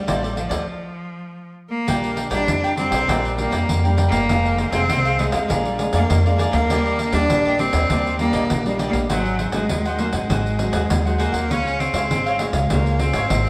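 Yearning and lively, this cut from a longer samba and choro piece puts a bright, biting, bowed cello with vibrato up front on the melody, beside a thumpy, woody pizzicato upright bass. A crisp, picked cavaquinho, a thumb-plucked classical nylon-string guitar sitting in the background and a jingly pandeiro played with soft hands fill out the accompaniment, and the band hits a stop from 0.7 to 1.9 seconds before the harmony moves through Bb6, Fm7, Ebmaj7 and Dbmaj7. The group plays live in one room, wrapped in a wet, large studio reverb.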